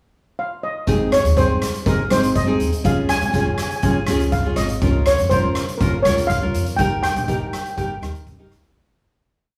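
This short, complete calypso piece has a sunny, bouncy mood and a straight feel. During a brief pickup bar, the steel pan enters alone at 0.4 s, played with soft rubber sticks and carrying a motif-based melody of hook phrases; it sits up front with a mellow, shimmering metallic tone. At 0.9 s the verse begins as the nylon-string guitar, upright bass and street-band drum kit join. The guitar is fingerpicked on fresh strings, with audible finger squeak and syncopated triad chords, while the pizzicato bass on gut strings plays a woody, thumpy syncopated figure. The drum kit lays down a calypso groove of hi-hat, rim click and a boomy kick, sounding airy and polished up front. A moderate recital-hall reverb surrounds the parts as the harmony moves from Ab through Db and Bbmadd9/Db to Eb, and the piece fades out from 6.8 s.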